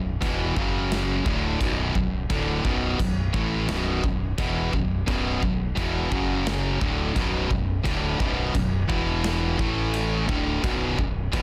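A straight 4/4 heavy metal groove at 86 BPM in B minor drives this heavy, epic excerpt, with a big acoustic rock kit of punchy kick, medium-tuned snare and bright china cymbal entering at 0.2 seconds under two picked guitar riffs, one overdriven and up front, the other high-gain and distorted. Beneath them a growling fingered electric bass, direct and amped with overdrive, adds a punchy low end as the chords move from B5 and F#5 through Bm, then E5 and A5 before returning to Bm. The sound is a dense, heavily limited modern master in a studio room, cut from a longer piece.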